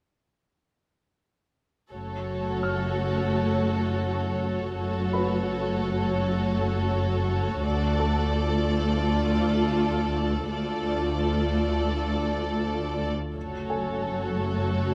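Bowed violin, viola, cello and double bass sections enter together at 1.9 s in this ominous, tense cinematic suspense cue cut from a longer piece, with smooth, up-front violins and lush violas singing with vibrato over rich, focused basses and expressive cellos gliding with portamento in the background, while a clear, polished baby grand piano joins high in its range at 2.6 s as a subtle background texture and the harmony moves from one minor chord to another and back, all inside a moderate scoring stage reverb.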